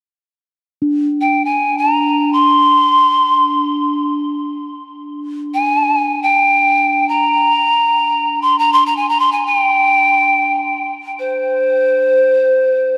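Meditative and haunting, this free-time piece of world meditation music is a short cut from a longer work, tuned to A4 = 439 Hz. A bronze singing bowl sounds a D4 from 0.8 seconds, struck with a felt mallet and ringing with a slow, metallic beating that stays soft, mellow and close. At 1.2 seconds a polished pan flute enters up front with the melody, ranging from C5 to C6 with a crisp, breathy chiff and an airy, woody straight tone. The flute is colored by tape echo and played expressively, its lifted highs floating above the bowl, which stops at 9.2 seconds. A huge, wet ambient reverb with a long 4.8-second tail surrounds the performance, leaving the flute to drift alone through the spacious room until the piece ends.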